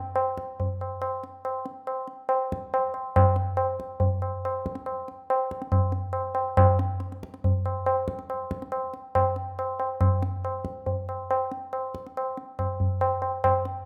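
A low-tuned, ringing acoustic tabla, close and up front, opens this serene, meditative Indian classical excerpt in free time, sounding from 0.2 to 13.8 seconds within a moderate recital hall reverb.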